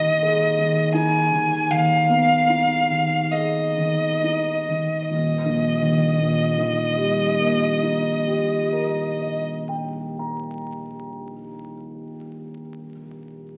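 A focused, clear violin with vibrato carries a lyrical romantic classical melody in a rubato duo over dark, mellow grand piano with deep bass and long sustain, slowing through an Abm/Eb opening before settling on Eb at 5.1 s, then the violin drops out at 9.4 s and the piano finishes alone at 13.6 s, all heard through a very old 78 rpm record's crackle and a reverberant recital hall in this fragment from a longer piece.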